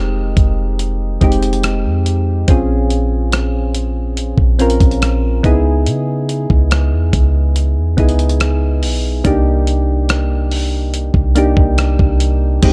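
A deep, boomy 808-style bass sits up front in this excerpt of slow contemporary R&B, its clean, sine-like tone striking fast and then decaying into darkness. From 0.4 seconds a dusty, sampler-style drum kit joins with a thumpy kick, hi-hat, rim click and crash cymbal, its sound gritty, compressed and tape-tinged. Soft electric-piano-like synth keys fill out the harmony with a round, mellow tone, a chorus effect giving them a shimmer. The chords move through Fm7, Bbm7, Dbm7 and Cm7 in a straight 4/4 feel, setting a longing, late-night mood. The production is dark and close, with little reverb, so every part feels near at hand.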